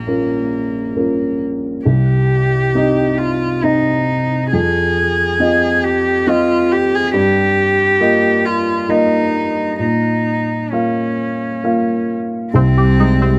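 A dark, woody upright piano and an intimate cello with an airy, sul tasto bow open this reflective, longing neoclassical piece in a rubato 3/4 at 67 BPM, tuned to A4 = 436 Hz and moving through Bbm, Cm, Fm7 and Ebadd9/G in a dry, closely miked sound, until at 12.6 seconds a twangy, nasal resonator pluck with chorus and slapback echo adds arpeggios while a clear, bowed double bass enters beneath.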